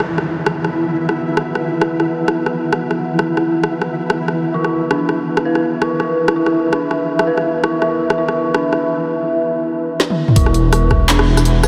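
Heavy and spacious, this half-time drum and bass fragment at 165 BPM opens with a brief background downlifter, a flickering grainy texture and a deep, moody ambient pad of sustained chords with chorus and sidechain pumping, over an overdriven, up-front kit of woody snare, bright hats, handclaps, rim clicks, tambourine and toms; eerie, inharmonic detuned bell arpeggios with chorus and analog delay join at 4.5 seconds, and after a drum fill at 10.0 seconds the drop at 10.4 seconds brings a rumbling, saturated detuned saw bass and a knocking overdriven kick, all soaked in a huge, dreamy reverb.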